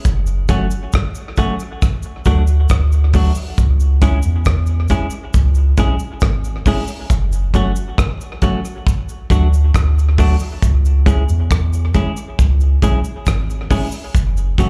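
A deep, round dub sub bass sits up front, its soft tone built from triangle and square waves with a fast attack and long sustain, moving between F#1 and E2 over a cycling F#m, D and C#m progression. This is a hypnotic, laid-back roots reggae groove in 4/4 with a straight feel, taken from a longer piece and heard as a live gig through the venue's PA, with club reverb and small room ambience. A damped 70s drum kit, dry and up front with a tight kick, plays hi-hat, kick drum and rim click from the opening moment. A clean, picked semi-hollow electric guitar enters at 0.5 seconds in a compressed hollow-body tone, carrying tape echo and slapback echo as it accompanies between F#3 and G#4. In the background, a compressed, saturated cabasa blends egg shaker and group handclap textures.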